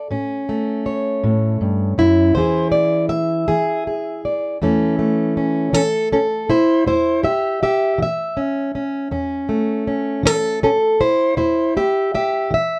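A fingerpicked, plugged-in steel-string acoustic guitar opens at 0.0 s, its boxy parlour tone and fresh strings sitting up front as it moves from A7 to E7 in a laid-back, swaggering country blues at 53 BPM in a straight 12/8. At 4.6 s the guitar turns to a solo passage back on A7, and across the excerpt it ranges from low E2 up to E5. The dark production places it in a modest booth ambience, and this short excerpt is cut from a longer piece.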